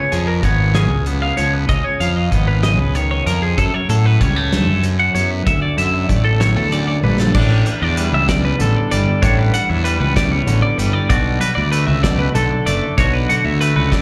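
A clean, compressed twelve-string electric guitar spins bright arpeggios through tape and slapback echo over a warm, scooped twangy electric guitar, joined at 0.1 seconds by a round, fuzz-overdriven fingered bass up front and a loose indie drum kit with a fat snare, punchy kick and dark cymbals, in an intricate, playful math rock and midwest emo excerpt at 64 BPM in 6/8, heard live through a club PA, moving from C#7 through F#m7 and D before a drum fill at 7.0 seconds opens onto A9sus4 and Gmaj9.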